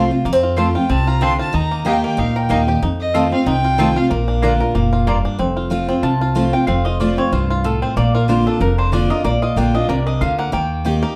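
A dark, nasal fiddle carries the melody over bright, full-bodied picked dreadnought guitar, mellow mandolin stabs and thumpy gut-string upright bass in this lively, rustic bluegrass excerpt at 187 BPM with a swung feel, while twangy fingerpicked banjo arpeggios join at 0.3 seconds. The fiddle drops out at 5.0 seconds, and from 5.4 seconds the woody double-strung mandolin takes a solo as the chords move from F through Bb to Eb. The guitar sits up front, and the band is heard from further back in a studio room with a short, wet ambience.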